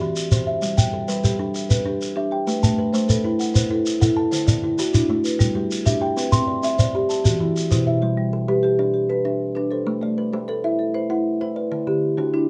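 A rippling, warm 12/8 cycle at 130 BPM in G major shapes this cut from a longer piece of Southern African traditional music: an up-front kalimba with a woody, hollow-box fingertip pluck rings out in arpeggios from the start, a grainy shekere plays from 0.2 s until 7.9 s, and a quieter marimba with soft mallets on round rosewood bars adds its own arpeggios from 0.8 s, all captured with close, detailed microphones and light reverb.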